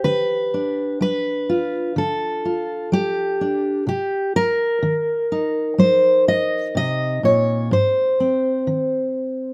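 In a straight, unhurried 4/4, this short folk passage drifts by at a slow walking pace. It is cut from a longer piece and lasts 9.5 seconds. A single fingerpicked steel-string dreadnought guitar carries everything. It sits up front with a dark, full-bodied tone that spans from Ab2 up to Eb5, tuned to A4 = 439 Hz. The harmony moves from G7/D to Cm at 3.9 seconds and settles on Ab at 7.7 seconds, which gives the moment a wistful, haunting cast. A light reverb surrounds the instrument and lends the intimate solo performance a gentle sense of space.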